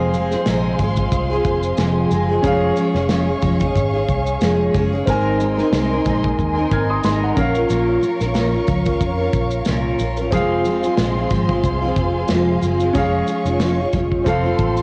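A gentle 91 BPM pulse in 4/4 with a light swing on the sixteenths sets this tender, reflective acoustic pop piece in motion. The modern studio drum kit comes in at 0.1 seconds, offering a punchy kick, a medium-tuned snare and shaker with a rolled-off top. Underneath, a vintage fingered electric bass plays in a dark, round, foam-muted tone. Out front sits a bright, full-bodied picked steel-string dreadnought guitar, double-tracked for extra body. It is joined by a clear, smooth concert grand piano with deep bass and a lush bowed string section holding sustained chords with expressive vibrato. The harmony moves from Fm through Db/F, Abadd9 and Bbm before returning to Fm and closing on F major at 14.3 seconds. The whole excerpt carries the soft glow of a home cassette recording in a lightly reverberant room, with tape coloring the piano, guitar, strings and drums.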